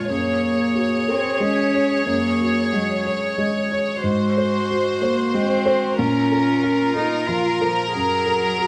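A violin section, cello, viola and felt-muted upright piano sound together from the start of this fragile, melancholic neoclassical fragment, cut from a longer piece and moving in a rubato 3/4 at 92 BPM, tuned to A4 = 441 Hz. The close, up-front violins carry the melody with light vibrato, the woody cello sings a dark second line, and the single airy-bowed viola sits softly beneath them; all three strings are played sul tasto. The intimate, mellow piano accompaniment has a thick-felt, short-sustained tone with audible action noise, all within a moderate large studio reverb over chords moving from Gbadd9 through Ab7 and Bbm back to Gbadd9 at 7.9 seconds.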